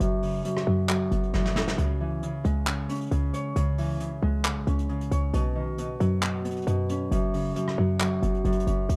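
Melancholic yet hard-hitting, this half-time trap excerpt sets a fingerpicked Celtic harp, ringing and up front behind a low-pass filter that sweeps across the opening 1.8 seconds, over a punchy, tight 808-style bass and a distant, roomy brush kit of snare, hi-hat, rim click and handclaps, whose fill at 1.3 seconds carries the opening F#sus4 into C#m before the harmony moves on to Badd9 and back to F#sus4, all within a dark, reverberant mix.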